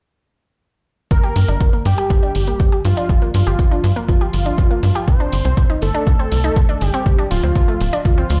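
Progressive house in G minor at 121 BPM, this expansive, bittersweet passage cut from a longer piece moves from Gm through Csus2 at 5.1 seconds to Dm7 at 7.1 seconds, with a punchy, up-front electronic kick, dark hats and a grainy cabasa in the background keeping a straight 4/4 pulse. A tight, driving sawtooth sequencer bass with sidechain pumping sits up front beneath a round, nasal analog pluck arpeggio dressed in chorus and delay. A thick, mellow unison lead carries the melody through dub echo, all placed in digital ambience that sounds played on a big sound system in a bare room with large studio reverb.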